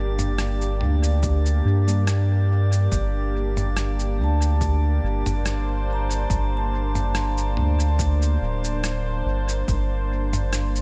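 A detuned sawtooth pad with chorus and phaser sustains a G minor chord from the start of this hazy, spacious ambient dub excerpt at 71 BPM, resting over a deep, round sub bass pushed up front with tube saturation and a faint glassy sine texture of drifting overtones bathed in reverb. A muffled, pitched-down sampler kit of cabasa, rim click and toms, overdriven and sent into dub echo, joins almost at once, with a punchy layered electronic kick arriving at 1.2 seconds and a very quiet, mellow tine electric piano stab at 1.9 seconds. From 2.9 seconds a metallic, ringing vibraphone played with medium hard mallets adds arpeggios through tape echo, the whole groove carrying a light 16th-note swing inside a digital ambience.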